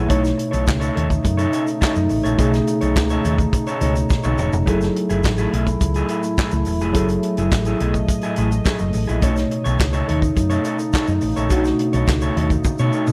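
A straight disco groove drives this danceable clip, with an up-front soul drum kit of tight kick, medium-tuned snare, hi-hat, handclaps and toms, adding fills at 4.1 and 12.6 seconds, while a grainy egg shaker sits in the background. A round, punchy hollow-body bass anchors the low end beneath a worn, slightly out-of-tune tine electric piano and a dark, slightly broken-up guitar through a small old amp. An evolving, detuned wavetable pad with chorus and its own reverb holds sustained chords over a light, small-room ambience.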